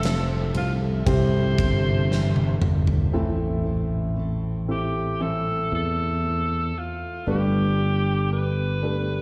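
Heartfelt and tender, this slow pop ballad at 58 BPM is led by a brilliant, vintage-toned alto saxophone melody with light vibrato, slapback echo and delay. Beneath it are a natural-sounding grand piano, a full-bodied fingerpicked acoustic guitar playing echoed arpeggios in the background, and a growly, up-front fretless bass. Dark, woody bowed strings and a huge arena drum kit with a fat snare and punchy kick fill out the opening; the drums play a fill from 2.1 seconds before both drop away at 3.1 seconds, as the chords move from Fmaj7 and C6 to Am, all heard as a live gig through the venue's PA with the light reverb of a recital hall.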